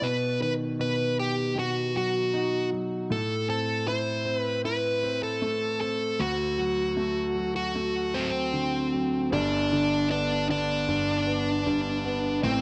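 A dark, smooth electric lead guitar with overdrive carries the melody from the opening, picked and up front over a concert grand piano whose intimate, polished tone, deep bass, long sustain and audible action noise fill out the accompaniment. This slow, straight-feel pop excerpt in 4/4 moves through B, Am and D before settling onto G at 9.3 seconds as a new section begins. A moderate plate reverb lends the heartbroken, longing mood a soft halo.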